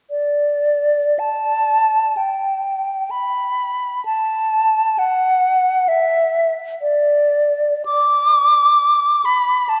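Nostalgic and lyrical, this brief classical excerpt for unaccompanied flute unfolds freely at a rubato 52-70 BPM in 4/4, the mellow silver concert flute sitting up front with a pure, metallic tone, tongued notes, vibrato and rolled-off highs as it sings between D5 and D6 from 0.1 to 9.8 seconds, bathed in a wet church reverb.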